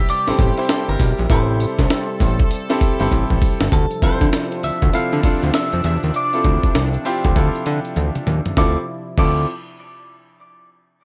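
Gritty, overdriven sampler-style breakbeat drums with a thumpy kick and high-tuned snare sit up front in this slick, bouncy new jack swing R&B cut in D minor at 99 BPM with swung 16ths, rolling into fills at 3.1 and 8.0 seconds, while a fat sawtooth analog bass holds the low end, a polished concert grand piano comps, an evolving chorused pad glows in the background, and a twangy clean electric guitar carries the melody through spring reverb and delay as the harmony moves from Am7 to Dm9 at 3.7 seconds.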